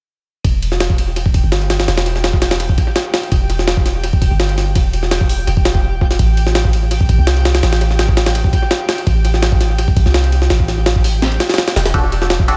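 A dry, echo-heavy mix opens this nostalgic, raw drum and bass excerpt. From 0.4 seconds a gritty, pitched-up jungle drum kit with a thumpy kick, high-tuned snare, hi-hat, ride and analog delay sits up front over a deep, boomy 808-style bass. From 1.0 seconds a sparkling granular texture shimmers in the background. At 11.9 seconds a nasal, band-passed chord stab with phaser, cassette tape and dub echo arrives as the harmony moves from Em through Am7 to Emadd9.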